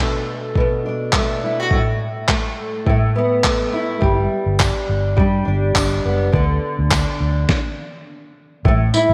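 A fingerpicked steel-string acoustic guitar opens this carefree acoustic pop excerpt, its dark, double-tracked tone sitting up front as it moves from Bm7 to Asus2 at an easy-going 104 BPM with a light sixteenth-note swing. At 0.6 seconds a gritty, sampler-style soul drum kit joins with a thumpy kick, fat snare, handclaps and tambourine, its compressed, tape-tinged sound placed close to the listener. A vintage muted electric bass enters at 4.0 seconds as the chords shift to G, adding a round, punchy low end through an amp. A jingly, dry tambourine sits in the background from 4.6 to 7.1 seconds, and a stop arrives at 7.5 seconds during a chordless stretch. A moderate echo-chamber reverb gives the mix a roomy glow.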